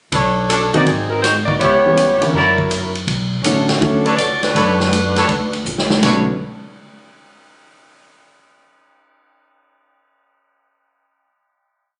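The warm saxophone section stands out up front, carrying a motif-based melody in tight four-part block voicing with vibrato and a smooth top, entering at 0.5 seconds. This is a short, complete big band swing piece in B minor at 162 BPM, brassy and swinging, moving through Bm9, G#7, C#m7b5 and F#7b13 before returning to Bm9. A clear trumpet section punctuates with syncopated stabs in close voicings, while a concert grand piano with audible action noise and deep bass adds syncopated comping in rootless voicings. A woody, thumpy upright bass plays pizzicato on gut strings in a two-feel, and a punchy big-band drum kit with a medium-tuned snare rides the cymbal up front, closing with a drum fill at 5.7 seconds before the final chord. The sound has light reverb and studio ambience, captured on a phone in the room, with nothing above 10.8 kHz.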